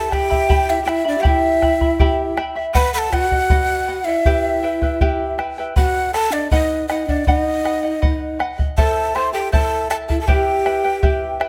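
Andean folk at 80 BPM in 2/4, wistful yet festive, this excerpt from a longer piece moves through Em, B and Am. An up-front, hollow cane quena carries the melody with vibrato and a crisp chiff, while large pan pipes add a breathy second line beneath it, a fingerpicked charango shimmers on double strings, and a round, dry bombo enters at 0.1 seconds. The sound is close and detailed with light reverb, and the tune turns to a new section at 5.8 seconds.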